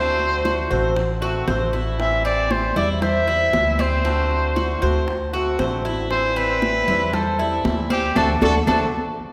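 Latin music in the Cuban son and guajira tradition, this short, sunny and danceable excerpt moves at 117 BPM in a straight 4/4, trading between D7 and Am7 chords. A punchy trumpet with vibrato carries the solo melody up front, though its tone sounds distant and roomy, in a pop style. Beneath it, a Cuban tres picks metallic arpeggios on double strings, some of them octave-doubled, while a boxy, fingerpicked acoustic guitar adds swing-style accompaniment. The upright bass is played pizzicato on steel strings, with a woody, growly and thumpy low end. Congas with a thick, high-tuned skin sit close and dry, and round, low-tuned bongos sound in a live room; both are played with soft hands in the background and come in at 0.2 seconds. The whole band closes with an accent from 8.2 seconds, all set in a church or concert hall with a wet reverb.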